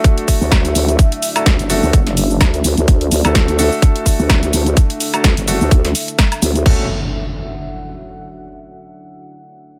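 A tight, up-front electronic kick drives this aggressive, bouncy bass house excerpt at 127 BPM in 4/4, swung on the sixteenths, while a layered house drum kit adds a punchy snare, tape-softened hi-hat, shaker, woodblock and crash cymbal. In F# minor, a nasal, resonant vowel-sweep wobble bass enters at 0.4 s with chorus and sidechain pumping. Concert grand piano stabs carry vintage 12-bit grit, a low-pass filter and tape echo, and a deep, moody detuned sawtooth pad with chorus murmurs in the background. Around 6.8 s the kick, kit, piano and bass drop away, leaving an electronic impact over the lingering pad in a light digital reverb.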